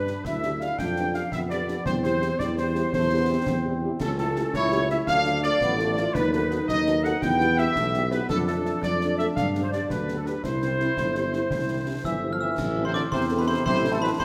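A military-style march for wind band in 6/8 and C major, this spirited, festive excerpt moves at 112 BPM counted in dotted quarters with a straight feel, heard in a recital hall with a wet, roomy reverb. Up front, a dark trumpet section with a smooth top carries the melody, while an airy, close-miked flute section with vibrato and a crisp attack plays a second line until about 12.4 seconds. Beneath them, a distant trombone section holds sustained chords with light vibrato, a mellow tuba anchors the bass, and a French horn section adds accompaniment from the background. Concert snare drum, bass drum and clash cymbals with dark cymbals keep time throughout. Around 12.0 seconds a distant euphonium and a bell-like, ringing glockenspiel struck with brass mallets join on second lines. The harmony winds from G through chromatic passing chords to a cadence on C before turning to A minor at 12.6 seconds as a new section begins.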